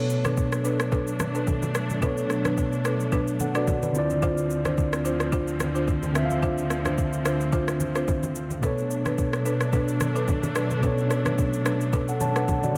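A mellow tine electric piano and lush, woody bowed strings with sidechain pumping open this deep, soulful amapiano excerpt in B minor at 109 BPM, soon joined by an overdriven electronic R&B kit of soft kick, rim click and shaker, buzzing vintage marimba stabs with delay, and very quiet low-tuned congas, all moving through Bm7 and Dm7 in a small, lightly reverberant room.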